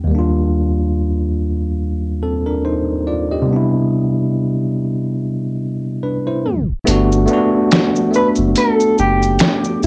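A swung 71 BPM lo-fi hip hop groove in G major sets a cosy, dreamy mood in this short cut from a longer piece, as a bell-like, barky tine electric piano with cassette tape colour plays lush chords alone until a tape stop at 6.4 seconds, after which a deep sine sub bass and a muffled, gritty, pitched-down sampler drum kit of snaps, hi-hat, shaker and snare enter at 6.9 seconds, joined at 8.2 seconds by a dark, slightly broken-up fingered electric guitar melody, all in a homely cassette recording with light reverb.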